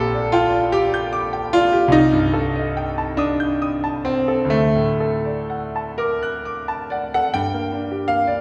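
A clear concert grand piano, up front with deep bass and a smooth, vintage tone, plays this romantic character piece alone. In G minor and 6/8 at a slow, rubato 39-54 BPM, the brooding, bittersweet harmony moves from G minor through a half-diminished chord to D major before settling back on G minor at 7.3 seconds. The short-sustained notes ring into a wet recital hall reverb, and the passage ends at 8.4 seconds as a brief cut from a longer work.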